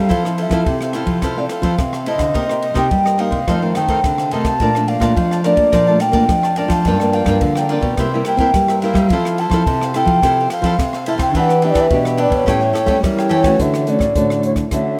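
This rough home demo has a light, small-room reverb around a festive, playful samba and choro passage cut from a longer piece. A distant, hollow wooden baroque flute carries the melody with a pure tone, vibrato and a crisp attack. Beneath it, a warm, full-bodied fingerpicked nylon-string guitar with a deep classical character fills in the harmony, while a second, smaller fingerpicked nylon-string guitar holds the bass line. A bright picked cavaquinho adds accompaniment until 13.6 seconds, and an airy, polished acoustic drum kit keeps time on hi-hat, dark ride cymbal, rim click and a boomy kick. The chords move from Fmaj7 through Cm7, F7, Bbmaj7, Gm7 and C7 back to Fmaj7, then through Em7 and A7 to Dmaj7 as a new section opens at 13.6 seconds.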